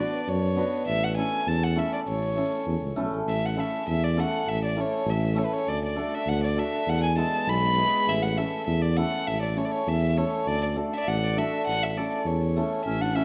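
Moderate recital hall reverb gives this recording a roomy, natural glow, with the tuba and violin sitting up front. It is a festive, wild slice of Balkan folk in a straight two-beat metre, cut from a longer piece. A dark, boxy violin carries the melody with light vibrato, a soft attack and an airy, sul tasto bow, sounding intimate and close. Beneath it, a bright hammered dulcimer rings and shimmers as accompaniment, while a mellow, close-miked tuba holds down the bass in a classical style. The harmony moves from B minor to A, then through D and E before settling back on A. A clear clarinet slips in at 12.9 seconds with a brief second line just before the cut at 13.2 seconds.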